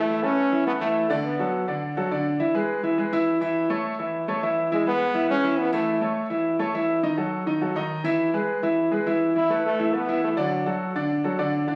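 Latin music with a joyful, festive mood, this short cut from a longer piece moves at a brisk, straight-feeling pace. A bright, punchy trombone carries the melody up front in a solo pop style, its smooth top heard in three short phrases beginning at 0.0, 4.7 and 9.4 seconds. A clear concert grand piano accompanies throughout, sounding intimate and polished, with deep bass and audible action noise that brings it close to the ear. The harmony moves from Aadd9 through Bm7, E and a D#dim before settling toward Asus2 and D. Captured on a phone in the room, the sound sits in a moderate studio reverb.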